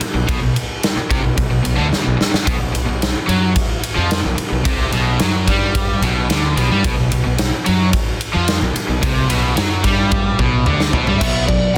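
A dense, heavily limited modern mix with light reverb and a small room ambience frames this aggressive, heavy hard rock excerpt in straight 4/4. A bright, cranked stack guitar and a hollow-body semi-hollow guitar, sitting in the background with spring reverb, pick out an overdriven riff over a growly, punchy fuzz bass played with the fingers. An up-front arena drum kit with a big natural room, a punchy kick, a medium-tuned snare, hi-hat, ride, crash and toms drives it all, with fills at 1.9 and 10.1 seconds before a biting, overdriven lead guitar melody enters at 11.2 seconds.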